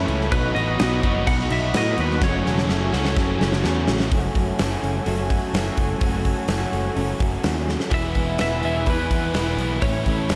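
At 126 BPM in a straight 4/4, a huge arena drum kit sits up front with a punchy kick, fat snare and bright cymbals in a pumping hall sound, driving this hazy, wistful slice of shoegaze and dream pop cut from a longer piece, with fills at 2.2 and 7.7 seconds. A bright, punchy picked bass anchors the low end as three overdriven guitars churn riffs in the background: a double-tracked distorted guitar, a second electric washed in reverse reverb, and a hollow-bodied semi-hollow swimming in lush chorus. Above them, a twangy, compressed twelve-string electric guitar carries a clean melody through digital delay, dropping out after 3.6 seconds and returning at 7.9 seconds. A smooth, warbling vintage analog pad with a soft attack and chorus holds sustained chords throughout, moving from B to F#madd9 and later E to Aadd9. The production is dark and warm, set in a small room with light reverb.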